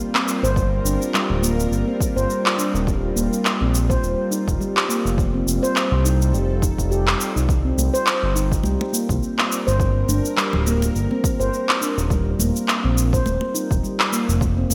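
A gently swung sixteenth-note groove in 4/4 carries this meditative organic downtempo excerpt, built on a punchy, layered electronic kick, up-front electronic cabasa and handclaps in gated reverb, and close, dry congas played with hard hands that slip into the background from 7.8 s. A ringing nitrided-steel handpan plays arpeggios through delay over a tense, string-like, bowed-like drone of sustained chords that has its own reverb and pumps with sidechain, while a smooth, saturated sawtooth synth bass glides up front beneath chords moving through Gm7, Eb and F7. A lush hall ambience and bright 1980s-style digital production lend the mix a glossy sheen.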